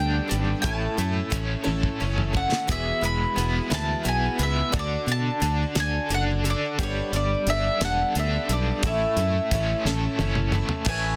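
Rolling in a straight 6/8, this nostalgic, jangly folk and heartland rock excerpt lays a mellow, double-strung mandolin melody with plate reverb and delay over a shimmering, octave-doubled twelve-string acoustic guitar, a bright, double-tracked overdriven electric guitar riff with tremolo, a dark, up-front fingered bass and a dry 70s drum kit with a fat snare and tight kick that fills at 1.7 and 9.8 seconds. The progression moves through Gadd9, A, Eadd9 and D chords, and a reedy hand-pumped harmonium breathes in over the final A at 10.9 seconds, all in a dense, heavily limited modern master.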